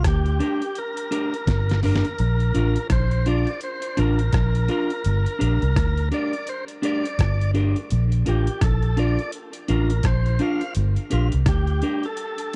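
Laid-back and sunny, this roots reggae excerpt rolls along at 84 BPM in 4/4 with a 16th-note swing, moving between G minor and B-flat. Up front, a dark, foam-muted fingered electric bass sits round and punchy in the low register, joined by a compressed, pitched-down sampler-style drum kit with a thumpy kick, a medium-tuned snare, rim clicks, hi-hat and toms, its tape-soaked muffled tone giving the groove a hazy weight. A drum fill arrives at 1.5 seconds. A clean, picked electric guitar enters at 0.4 seconds, its dark tone dressed in spring reverb and tape echo. Carrying the melody, a full-bodied tonewheel organ with audible key click is lightly overdriven and spun through a fast rotary speaker with tape echo, sitting lower in the mix than the rhythm parts. The whole piece has the dry, close feel of a 1970s studio.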